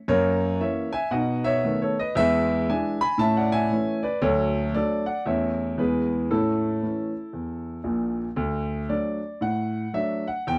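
A dry, close, 1970s-style studio sound with a moderate booth ambience frames this exuberant, swinging cut of stride jazz piano in A major at 115 BPM, where a boxy, up-front grand piano plays solo across a span from Bb1 to B5, running a chain of F#7, B7 and E7 into A before moving on to D and, at 8.4 seconds, starting a new section that lasts until the piece is cut off at 10.6 seconds.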